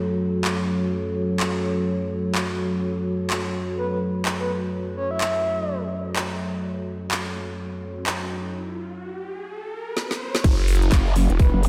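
Swaggering and gritty, this bass house excerpt opens on a deep, moody analog pad holding sustained F# minor chords, its detuned, wave-folded tone pumping against the beat and sitting up front in a dreamy mix soaked in hall reverb. A garage drum kit joins almost at once with a woody snare, metallic hats, handclaps and crash, swung on the sixteenths. Between 3.8 and 5.8 seconds a breathy, flute-like synth lead sings a short melody with vibrato, roughened by vintage 12-bit sampler grit and trailed by analog delay. A riser builds from 8.0 seconds, a drum fill follows, and at 10.4 seconds the drop lands with a tight, up-front electronic kick, a nasal vowel-sweep wobble bass with overdrive, and a very quiet, airy acoustic kit in a small room. A growling, detuned bass with tube saturation pushes in on F#1 just after, giving the final moments an aggressive, pumping low end.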